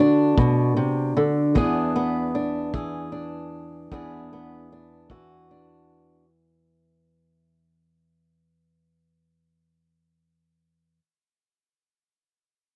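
Laid-back and swaggering, this short acoustic country blues fragment in 12/8 sets an up-front, woody, boxy fingerpicked old ladder-braced guitar with dark, old strings carrying the melody over D7 and E7, joined from 0.4 to 5.3 seconds by a punchy, mid-forward kick drum with a rolled-off top, all caught in a dry, close 1970s-style studio sound with light reverb as it fades out.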